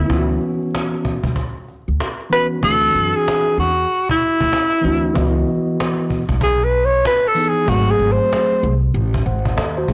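A blown-out, overdriven recording with vinyl crackle and light small-room reverb frames this smoky, mellow jazz-hop fragment, where a breathy, subtoned alto saxophone with vintage vibrato sings a soloing melody until 8.7 seconds over a clean tine electric piano heard through its built-in speakers, a woody, thumpy pizzicato upright bass on gut strings with transformer saturation, and a snappy cajon in a swung 16th-note groove, all moving through lush extended chords from Dmaj13 to G#7b9.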